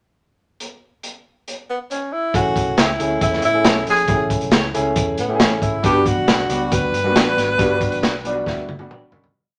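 A straight 4/4 backbeat soul groove at 137 BPM drives this short, danceable piece of uptempo 1960s-style soul in A major. A crunchy breakbeat drum kit opens at 0.6 s with a tight kick, medium-tuned snare, hi-hat and toms, its gritty, saturated sound carrying vintage 12-bit sampler grit and a rolled-off top, and it sits up front before closing on a fill. A breathy tenor saxophone enters at 1.7 s with a motif-based melody of call phrases, full of vibrato, soft attacks and scooped notes in a jazz style. From 2.3 s, as the chords move from Amaj7 to Gmaj7, a clear concert grand piano pushes close-voiced chords with grace notes and short fills, while a dark, foam-muted fingered electric bass plays a round, punchy, syncopated line with chromatic approach notes. A lo-fi electric guitar through a small old amp adds very quiet, slightly broken-up chops on the backbeat, and from 5.8 s a baritone saxophone with a smooth top and light vibrato punctuates low in the background. 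Moderate studio ambience frames the mix as the piece fades out, ending with a piano fill and a drum fill.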